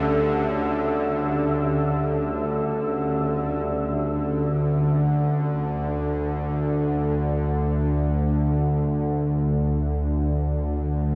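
Drenched in a huge, dark reverb, this unsettling, desolate dark ambient drone excerpt in free time opens with a deep, chorused pad holding a Gsus2/D chord and a breathy, wind-like tuned noise texture, both ending at 3.7 s, while a nasal, string-like bowed drone with vibrato sits up front and carries on alone until 11.2 s.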